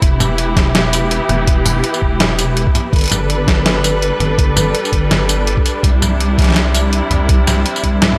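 A gritty, thumpy electronic kick anchors this spacious, heavy half-time drum and bass passage alongside a compressed, up-front sampler-style kit of hi-hat, medium-tuned snare, tambourine and toms, a deep, dark wobble bass thickened with chorus, and a lush bowed string section holding sustained chords over Em, G and Cadd9 with sidechain pumping, set in light reverb until the kick drops out at 7.9 seconds.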